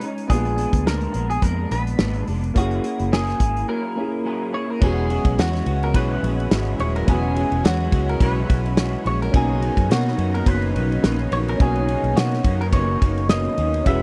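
This dreamy, laid-back bedroom-pop excerpt opens on a loose indie drum kit with a fat snare and tight kick, a dark, slightly broken-up electric guitar through a small old amp with ensemble chorus and vibrato, and a woody upright piano in the background with a cassette-tape tint. At 0.3 s a bright, twangy clean electric guitar takes the melody through analog chorus over a round, foam-muted fingered bass, and after a break from 3.7 s a lush, detuned unison pad with a soft attack enters at 4.8 s to sustain the chords. The close, dry 1970s-style small-room sound keeps the drums and bass up front under a lightly swung feel.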